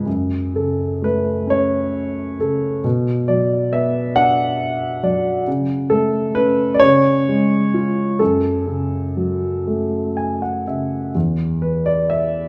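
Dark and melancholic, this brief lyrical classical passage for solo grand piano unfolds in a slow, rubato 6/8 with a mellow, intimate tone, audible action noise and long sustain heard up front in a reverberant recital hall, moving through shifting harmonies in F# minor to a fill at 9.7 seconds before a new section opens at 11.1 seconds.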